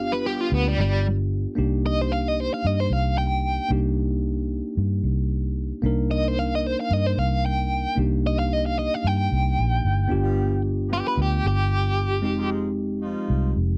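A biting, overdriven guitar solo with tremolo and slapback echo opens this brooding, mournful swung blues over a bell-like, clean tine electric piano and a dark, round, foam-muted fingered bass, while a mellow horn section with light vibrato adds soft sustained chords briefly at 0.2 seconds and again from 10.1 seconds, captured in a dry, close 1970s-style studio recording.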